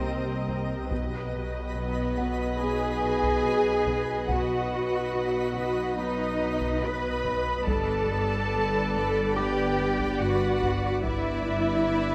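A moderate concert-hall reverb surrounds this tense, mysterious suspense cue at 71 BPM, where veiled, con sordino violin sections carry a melody and a smooth-topped second line above a soft-attack viola accompaniment, while an up-front cello section and a distant double bass section hold the bass alongside a lush, very quiet cello riff. Mellow French horns sustain chords in the background beside a twinkling, sparkling granular texture with an octave-up shimmer and its own reverb, and a punchy sine sub bass drones with a pitch-drop attack. A thick-felt upright piano adds an intimate, hushed texture, close and dry taiko drums struck with heavy sticks enter at 0.5 s, and the harmony moves from Cm7 to B and then to G.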